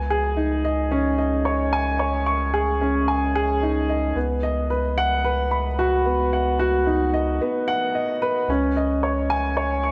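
This piano and strings electronica excerpt moves at 111 BPM in a straight 4/4, with a moving, cinematic mood. An up-front, woody upright piano carries the riff with long sustain and tape echo, while a round analog bass holds a deep, dark, sine-like low note, its sustained tone shaped by a filter sweep. Both play throughout the 9.9 seconds over a C#sus2 to B/C# progression that returns to C#sus2, all set in a lush hall reverb.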